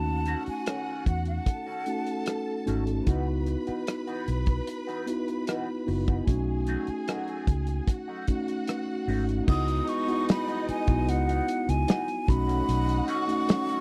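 Smooth and silky, this is a slice of lush 1970s-style soul in C# minor, moving at an unhurried 75 BPM in a straight 4/4. A breathy, hollow jazz flute carries the melody with vibrato and a soft attack, stepping away at 2.6 seconds and returning at 9.5 seconds. Underneath, a mellow, clean tine electric piano holds the accompaniment up front, while a dark, foam-muted fingered electric bass sits close with a round, punchy tone. A warm soul drum kit with a tight kick, dark cymbals, rim clicks and a medium-tuned snare drives the groove, joined by a clean electric guitar riff coloured with wah and subtle chorus. Distant bowed strings with expressive portamento trace a second line throughout, and at 9.5 seconds a smooth-topped horn section adds background stabs as the harmony shifts from C#m11 toward B9, all captured in a dry, close studio sound.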